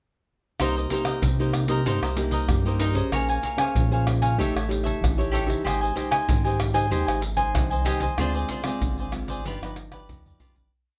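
A bright, crisp cavaquinho strums in sixteenths up front, driving this short, lively and nostalgic samba-choro piece, while a dark, fingerpicked nylon-string guitar adds thumb bass and syncopated plucked chords, its finger squeaks audible. A deep, thick saturated sub bass plays a sustained samba figure beneath hard-handed pandeiro, shaker, tamborim and a booming surdo in a small acoustic room, moving through a descending progression from Cm7 down to Abmaj7 before a Dm7b5 to G7b13 turnaround. The groove begins fading at 8.2 seconds, and a drum fill closes it out from 9.8 seconds.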